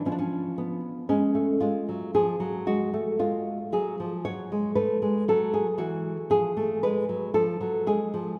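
A solo nylon-string guitar, warm, thumb-plucked and up front, opens this serene, dance-like baroque-style classical passage at a rubato 57 BPM in 4/4, moving from F minor to F-sharp minor at 4.2 seconds and to F diminished at 6.3 seconds, all bathed in the long, wet reverb of a church.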